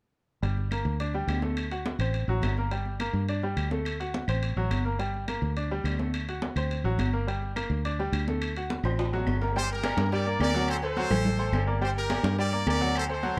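Salsa with a driving, fiery mood, in which a bright, woody upright piano and a dark, round, foam-muted fingered electric bass sit up front over high-tuned congas struck with hard hands, ringing timbales and agogo bells set distant in a large room, and acoustic claves in the background, before a drum fill at 8.8 seconds leads into a punchy, tight trumpet section with vibrato entering at 9.6 seconds over alternating Gm and D7 chords, all in a dry, close, detailed recording.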